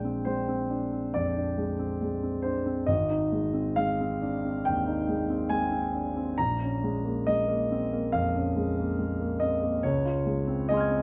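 Hazy and mysterious, this brief fragment of impressionist classical solo piano drifts in a rubato 4/4 around 69 BPM, its up-front concert grand (tuned to A4 = 438 Hz) spanning Ab1 to Ab6 with deep bass and long sustain as it moves from Bb13 through Ab and Bbm7 to Dbmaj7 at 9.8 seconds, all bathed in a moderate scoring-stage reverb.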